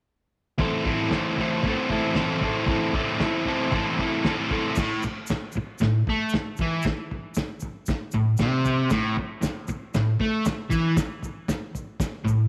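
A straight 4/4 pulse at 116 BPM drives this raw, menacing garage rock excerpt in A minor, where a dark, overdriven, double-tracked electric guitar riff with spring reverb sits up front over a muffled, cloth-damped drum kit of thuddy toms, fat snare, tight kick and dark crash cymbal, joined at 4.8 s by a grainy, close egg shaker as the harmony moves from an A minor chord to a chordless passage, all inside a moderate echo chamber reverb.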